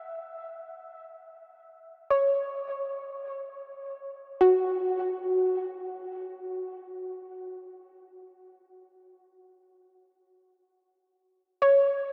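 Melancholic and spacious, this ambient fragment drifts in free time, cut from a longer piece. A single soft, round synth pluck carries it alone, sounding from 0.0 to 5.1 seconds and returning briefly at 11.6 seconds, moving between F#4 and E5. Its tone is gentle and dark, a blend of triangle, sine and sawtooth with a noise layer, shaped by a filter into a fast attack that decays away. Analog chorus thickens the pluck and a diffuse ambient delay trails behind it, while it stays up front in the mix. Around it, a huge, wet reverb lingers for nearly nine seconds, wrapping the sound in a dark, warm haze.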